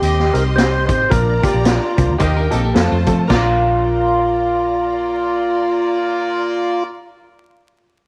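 Joyful and warm, this short excerpt from an uptempo 1960s-style soul piece moves at 110 BPM in 4/4 with a swung eighth-note feel in Bb major, cycling through Cm, Bb, Eb and F before landing back on Bb. A fat, clean tonewheel organ carries the melody up front through a slow rotary speaker, while a punchy, tight horn section sits distant and roomy on a second line beside a bowed studio string section whose expressive vibrato is touched with slapback echo. Underneath, a dark, round, foam-muted fingered electric bass sits up front, and a woody upright piano with short sustain comps in the background. A vintage drum kit with a punchy kick, medium-tuned snare, hi-hat, china cymbal and a rolled-off top drives the groove until 3.5 seconds. From 0.6 seconds a slightly broken-up, lo-fi guitar through a small old amp adds stabs treated with lush chorus, and between 2.2 and 3.3 seconds a clean, picked electric guitar slips in a brief tremolo riff. 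Light reverb, small room ambience and a layer of vinyl crackle give the whole recording a vintage patina.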